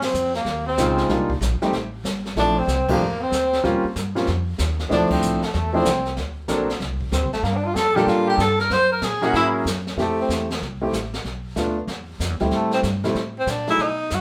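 Playful and relaxed, this small-group swing and bop excerpt moves at 189 BPM in a swung 4/4, with a breathy, up-front tenor saxophone carrying the melody through scooped notes while a dark trumpet traces a second line in the background until 9.5 s; a woody, thumpy pizzicato upright bass and a brushed kit with a high-tuned snare and boomy kick drive the swing, a warm, intimate grand piano with audible action noise and long sustain joins at 0.8 s, and the band hits shared accents at 2.8 and 5.1 s over rich extended chords in a live-sounding room.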